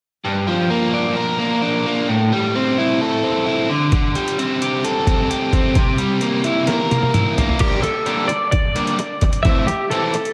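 A biting, overdriven electric guitar opens this indie rock excerpt with a picked, double-tracked riff placed up front, setting a cool, bittersweet mood over a straight 4/4 pulse. At 3.9 seconds a trip hop, sampler-style drum kit joins, compressed, pitched down and muffled, with a thumpy kick, a medium-tuned snare, hi-hat, crash and toms, all given a gritty overdrive. The harmony moves through Gm7, Am7, D7sus4 and C7 before a drum fill at 6.7 seconds leads into a new section. There, at 7.6 seconds, a bright, twangy twelve-string electric guitar enters with a clean, compressed, picked melody, colored by subtle chorus and tape echo as the chords shift between Gm and Am. A lush hall reverb soaks the whole mix in a dreamy digital ambience, and the piece is cut from a longer work.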